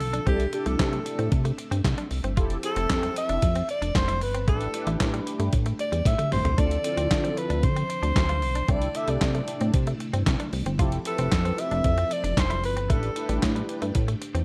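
A dry, dark mix frames this late-night, danceable early-eighties boogie funk at 114 BPM. Up front are a thumpy, sampler-style 12-bit drum machine of kick, snare, hi-hat, handclaps and toms, with a fill at 6.1 s, and a glossy, chorused synth bass. A bright, twangy clean electric guitar with analog chorus plays a riff, a lush string machine holds chords in the background, and round, brassy synth brass with chorus and phaser adds accompaniment over chords that move from C69 through Fmaj7, A7sus4 and Dm9, while a breathy alto saxophone with light vibrato and slapback echo carries a jazz-style melody until 13.4 s.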